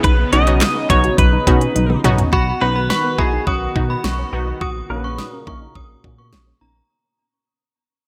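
Light reverb and a digital ambience frame this short synth-pop excerpt, which runs at 105 BPM in a straight 4/4 in B major and carries a nostalgic, wistful mood. A twangy, clean electric guitar recorded direct sits up front with the melody, treated with analog chorus and a low-pass filter, while an electronic pop drum kit with a knocking kick, fat snare, crisp hats, handclaps and toms drives it along. Beneath them, a smooth, dark sawtooth synth bass holds the low end, a very quiet, round pluck plays gentle arpeggios, and an evolving, detuned pad sustains chords in the background with chorus and a low-pass filter. A punchy, lush unison pluck adds accompaniment from 0.3 seconds, and a drum fill leads into a new section at 2.3 seconds, where a chiming, inharmonic FM synth with ensemble chorus enters on a second line high above. From that point a filter sweep and a fade-out carry the music through the chords B and F#/A# to its close.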